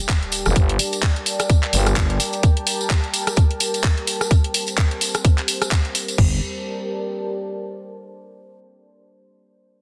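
A growling, thick FM bass sits up front in this swaggering, bouncy bass house excerpt, arriving at 0.5 s with a fast attack and sidechain pumping, then returning briefly at the turn into the closing section. Tight, layered garage drums drive the groove with a tight kick, crash and toms, while bright hats, handclaps, rim clicks and a soft-clipped snare sit alongside a jingly, close acoustic tambourine, all with a swung feel. A sub drop opens the piece as a background impact, and a deep, moody sawtooth pad with chorus, built-in reverb and sidechain pumping carries on after the drums stop around 6.2 s, joined briefly by the bass, under a dense, heavily limited modern master.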